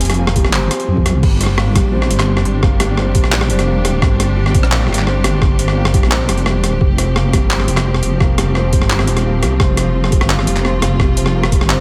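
A half-time drum and bass groove in 4/4 sets a dark, spacious mood in this short cut from a longer piece: a gritty, overdriven, pitched-down sampler-style kit of crash, handclaps, hi-hat and rim click is joined at 0.4 s by a thumpy electronic kick, while a deep, up-front sawtooth-and-sine wobble bass with chorus, a soft felt-muted upright piano playing mellow arpeggios through delay, and a lush, distant symphonic string section holding sustained chords under sidechain pumping move over Fmadd9, Gm and Fsus2 in a dry sound.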